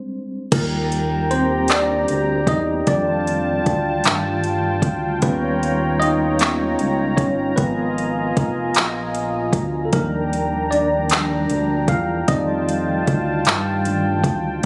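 Slow six-eight R&B in Eb major at 51 BPM, this sensual excerpt is cut from a longer piece and moves through lush chords such as Ebmaj7, F13, Eb7b13 and Abm6. A worn, slightly out-of-tune tine electric piano, lightly overdriven and heard through built-in speakers, opens alone in a brief break before taking the lead as a solo from 0.5 seconds onward. Beneath it, a smooth, warbling analog pad with a vintage, wave-folded character and chorus holds sustained chords up front. A round, deep analog bass with a fast attack and a dark, detuned tone anchors the low end. The electronic R&B drum kit sits up front with a soft kick, metallic hi-hats, handclaps and crash cymbal, all roughened by overdrive. The recording is dry, with a phone-in-the-room quality set against a touch of studio reverb.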